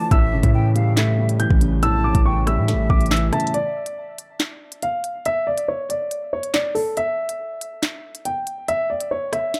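Cold and ominous, this half-time drill excerpt at 140 BPM opens on an A7 chord with a dark, mellow baby grand carrying the melody up front through a low-pass filter and delay, shadowed by a hollow, airy concert flute with vibrato and a felt-muted upright piano giving soft, intimate accompaniment with audible action noise. A punchy, heavy 808-style bass with a noise layer and fast attack sits beneath an electronic drill kit of knocking kick, sharp snare, crisp hats, handclaps and rim clicks. The bass drops out at 3.3 seconds, and at 3.5 seconds the flute and then the upright piano fall away for a break where the baby grand and drums carry on in a small, dark room, and the kick falls silent at 8.7 seconds.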